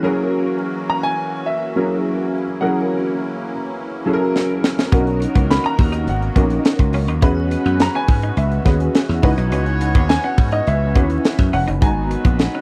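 Polished 1980s jazz-funk pop with a bittersweet, nocturnal mood, this short cut opens on an intimate concert grand piano with audible action noise and ensemble chorus, a reedy, shimmering musette accordion holding sustained chords beneath it, and a smooth, vintage grand piano melody with slapback echo arriving at 0.9 seconds. A tight funk kit with a high-tuned snare enters up front with a drum fill around 4.3 seconds, joined at 4.9 seconds by a bright, punchy thumbed slap bass, a clean picked electric guitar riff with analog chorus, and a distant horn section with light vibrato playing a second line. The close, dry 1970s-style studio sound carries a layer of vinyl crackle as the harmony moves from F#7 through Bmaj7, E69 and C#m11 to G#m9.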